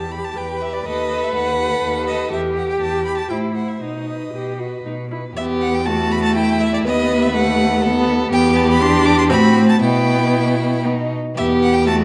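A warm, up-front viola carries the accompaniment with vibrato and portamento in this restless, stormy classical-period string quartet movement in triple metre, played with a rubato feel and cut from a longer work. Above it, a clear, focused first violin sings the high melody while a rich, expressive second violin traces an inner line and a cello with a smooth top anchors the bass, each a single bowed player. The opening passage returns at 5.4 seconds, and the whole performance sits in the wet reverb of a recital hall.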